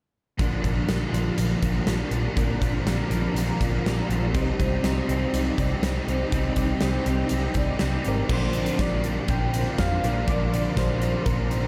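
Shoegaze and dream pop rock with a melancholic, hazy mood, where an up-front arena drum kit with bright cymbals and a punchy kick drives a biting overdriven guitar riff joined by a raw garage guitar riff with reverse reverb in the background, over a dark, foam-muted vintage bass, while a shimmering, ethereal pad drifts in at 2.3 seconds, a very quiet octave-doubled twelve-string acoustic guitar adds picked arpeggios with finger squeak from 4.4 seconds, and a soft, round FM synth lead with vibrato and diffuse delay sings a gentle melody from 8.1 seconds, all in a dreamy mix soaked in lush hall reverb.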